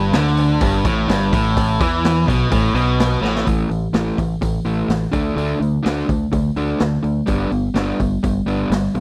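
Sunny and swaggering, this classic rock excerpt struts along at 126 BPM in a straight 4/4, built on power chords moving from G5 to A5 and D5 before landing on G, in a dry, close 1970s-style studio sound with light reverb. An overdriven semi-hollow guitar carries the riff up front throughout, joined for the opening 3.5 seconds by a bright, tight distorted guitar, while a growling fingered bass with overdrive holds down the low end and a very quiet, band-limited cowbell clanks along until 3.3 seconds. The raw garage drum kit, gritty and saturated with a punchy kick and a rolled-off top, sits up front and throws a fill at 3.2 seconds that launches the second section.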